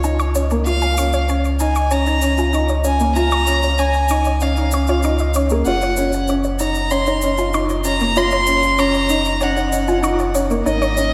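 A rich, pure violin carries the melody up front, its single bowed player drawn sul tasto with a soft attack and a floating, distant quality, trailed by delay. Beneath it, a worn, woody upright piano, slightly detuned and present, repeats a riff through subtle chorus and delay, while a round sine sub bass with a fast attack holds a deep, sustained foundation. In the background, a punchy sawtooth unison pluck, detuned and wave-folded, spins delayed arpeggios until it drops out at 10.9 seconds. An electronic shaker, overdriven and re-recorded in a large room, sits far back in the mix. This hopeful, luminous piece of piano and strings electronica is a short build-up cut from a longer work, moving from a Db6 chord to Gb at 5.7 seconds, with the whole mix soaked in a lush hall reverb that lends it a dreamy glow.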